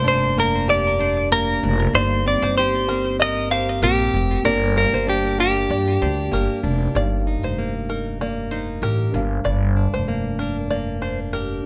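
A lightly swung sixteenth-note feel at 96 BPM in 4/4 carries this reflective, tender acoustic pop passage, tuned to A4 = 435 Hz. A compressed, direct-recorded clean electric guitar with delay plays the melody up front until 6.6 s. It sits over a dark, full-bodied jumbo steel-string acoustic guitar fingerpicking the accompaniment, twangy, plunky open-back banjo arpeggios, a reedy electric piano with fast tremolo in the background, and a woody, thumpy pizzicato upright bass on gut strings, all set in light reverb as the chords move from Bb through Cm7/G and Gm to Ebadd9 at 6.9 s before returning to Bb.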